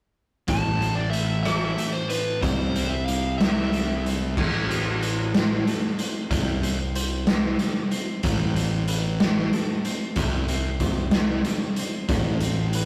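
A raw garage drum kit sits up front, its punchy kick, medium-tuned snare, rim clicks, hi-hat and crash sounding gritty and dark in a bright stone room, anchoring this brooding stretch of quiet-loud alternative rock in A minor at 62 BPM in 6/8. A fuzzy, overdriven picked bass also sits up front beneath clean, compressed twelve-string electric guitar arpeggios. A biting overdriven lead melody ends at 4.1 seconds and a thick, distorted fuzz riff in the background stops at 4.4 seconds, leaving bass, drums and twelve-string to carry the rest of the rough rehearsal-room recording, with its light reverb and warm saturation.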